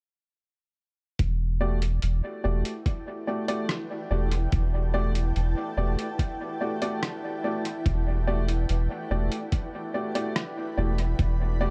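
A straight 4/4 ambient dub groove starts at 1.2 s with a muffled, overdriven, pitched-down kick thumping up front, a lo-fi sampler-style kit adding compressed hi-hat and rim click through dub echo, and a round, soft sub bass holding a deep low E. A woody, slightly detuned upright piano arrives at 1.6 s with stabs thrown into dub echo, and at 2.3 s a cloudy, evolving granular pad with its own built-in reverb drifts in, bright yet blurred. The whole excerpt rests on a single Em11 chord, giving a spacious, hazy mood within a dark, dry production.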